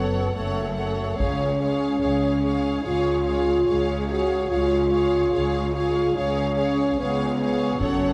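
A straight 4/4 pulse at 72 BPM drives this heroic, epic orchestral film-score excerpt, where a dark, up-front French horn section holds sustained chords over rich bowed cellos and distant double basses, warm second violins and expressive, portamento-inflected violas fill the middle, a clear, focused violin section carries the melody with vibrato, and a close, dry taiko ensemble played with heavy sticks enters at 1.2 seconds and returns at 7.8 seconds, as the harmony moves from F#m to C# in the moderate reverb of a scoring stage.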